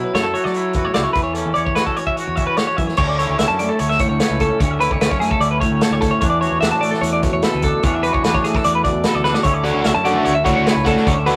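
A clean, compressed twelve-string electric guitar sits up front with arpeggios in this playful, bright math rock and midwest emo excerpt at 148 BPM in 4/4, backed by a twangy, fingered guitar accompaniment, a growly, punchy fuzz bass and a loose, small-room indie kit with dark cymbals and a tight kick. The chords move from F#m7 and A6/E to Dmaj7sus2 and E9sus4, and after a drum fill at 9.3 seconds a biting, double-tracked overdriven guitar riff joins at 9.6 seconds over Dmaj9. The rough rehearsal-room sound carries light reverb and tube saturation.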